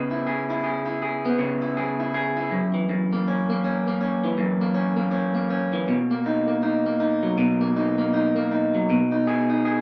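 Nostalgic and dreamy, this short indie pop passage cut from a longer piece moves at a relaxed 80 BPM with a gentle 16th-note swing in B major, as a lone electric guitar through a small old amp, twangy, bright and slightly broken-up with a warbly pitch drift, sits up front in a wet studio reverb and picks through C#m7, F#7, Bmaj7 and G#m/B over its 9.8 seconds.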